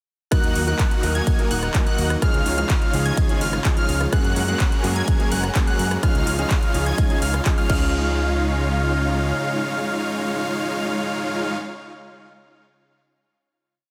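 A dense, heavily limited mix with light reverb carries this triumphant, euphoric festival progressive house piece in Db major at 126 BPM, where huge detuned supersaw chords in dotted rhythms, a plucky arpeggiated lead doubling them an octave higher, a chorused pad and an intimate grand piano with audible action noise all pump under sidechain over a punchy four-on-the-floor kick, a big-room kit of claps, rim clicks, ride, crash and metallic hats, and a fat off-beat analog bass, before the drums drop away at 7.8 s and the bass at 9.3 s for the final hit.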